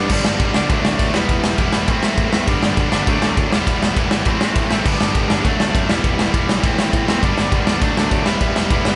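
Recorded as a band playing live in one room with light reverb and a dark top end, this short punk rock cut from a longer piece feels upbeat and rebellious at a driving, straight pulse. Up front, a tight, bright, double-tracked distorted guitar picks a riff through a repeating G, D, Em, Am cycle, while a big acoustic drum kit in a large room hits with a punchy kick, medium-tuned snare and bright crash and ride cymbals. Beneath them, a growly fuzz-overdriven electric bass sits in the background, running from the start to 8.9 seconds.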